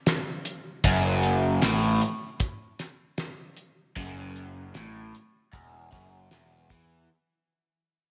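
A cloth-damped, thuddy drum kit with a fat snare and tight kick sets a straight 77 BPM pulse in 4/4 alongside a grainy tube shaker in the background, before an overdriven, double-tracked electric guitar riff with phaser and a round, fuzzed picked bass enter at 0.8 seconds on an Esus24 chord, giving this short, fading psychedelic rock fragment a hypnotic, mysterious air inside a moderate echo-chamber reverb.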